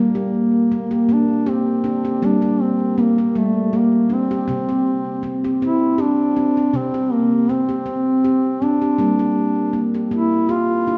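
Meditative world music with tuned percussion, this hypnotic 11-second fragment of a longer piece moves at 80 BPM in an unhurried 3/4, with a light swing on the sixteenths and a G dorian modal color, tuned slightly low to A4 = 439 Hz. A dark duduk carries the solo melody up front in a folk style, its scooped notes and smooth top floating between A3 and F4. Alongside it, a handpan plays warm, ringing, stainless-steel arpeggios struck with the fingertips from C3 to G4, also placed close and present. Both instruments share a tape echo, and a lush recital-hall reverb of 1.6 seconds blends with a small-room ambience for a dusky, warm production. The harmony rests on G minor, shifts to a C5 at 4.5 seconds, and returns to G minor at 9.0 seconds.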